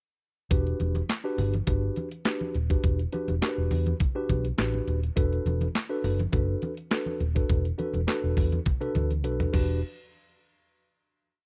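Early-eighties boogie funk with a funky, late-night mood, this short piece sets a fat, syncopated boogie bass line on a dark, foam-muted fingered electric bass, full of slides and chromatic approach notes, against a crisp 8-bit drum machine whose thumpy kick and clap-layered snare drive a mid-tempo boogie beat. A mellow tine electric piano plays clean, syncopated chord stabs in rootless voicings with grace notes, moving from Em7 to D69, while ringing congas add a syncopated groove in the background. A drum fill from 8.7 seconds leads into a final hit at 9.8 seconds, set in a dry, close 1970s-style studio sound with digital ambience.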